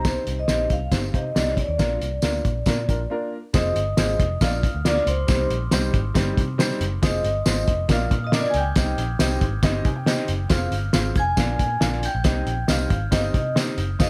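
A cloth-damped drum kit sits up front in this joyful, danceable slice of uptempo 1960s-style soul, its fat snare, tight kick and hi-hat sounding muffled, gritty and saturated with a rolled-off top. Over it a vibraphone played with soft mallets carries the melody, mellow and airy with a slow motor vibrato, while a baby grand piano accompanies with long sustain and audible action noise that lends an intimate, natural feel. A vintage muted electric bass, picked and foam-muted, adds a dark, round, amped low end, and a bright, jingly tambourine with a band-limited vintage edge rides quietly in the background. After a short break at 3.1 seconds, a soft, bell-like glockenspiel enters at 3.5 seconds as a second line above the vibraphone, and the piano steps forward with a fill at 9.6 seconds. The changes cycle through Cm, Bb and Fm, and light reverb gives the whole band a small-room ambience in this cut from a longer piece.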